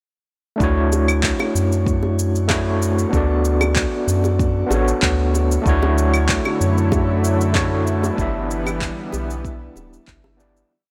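Sunset chillout with a warm, sunny mood, where a gritty, barky overdriven tine electric piano sits up front with tremolo, tape echo and shimmer reverb, playing held chords with syncopated pushes over long gliding notes from a round, dark analog bass, a deep, soft electronic kick, a light lounge beat of electronic cabasa, claves and handclaps, and tight, high-tuned bongos in the background, while a lush, warbling unison pad with chorus enters at 5.7 s just before the piece fades out from 7.3 s to 10.7 s.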